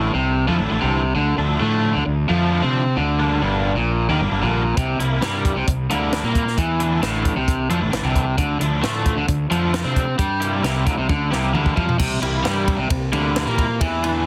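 Indie rock excerpt at 133 BPM with a cool, bittersweet mood, in which a bright, picked overdriven guitar riff sits up front beside a second cranked-stack guitar riff coloured by chorus and delay, over a round, fuzzy fingered bass; a dry compact cocktail kit with dark cymbals, a high-tuned snare and a tight kick enters at 4.8 s and plays a fill at 11.1 s, and very quiet, mellow string-machine cellos with phaser add soft sustained chords from 12.0 s, while the recording has a heavily compressed, radio-like sound with light reverb and a faint mains hum.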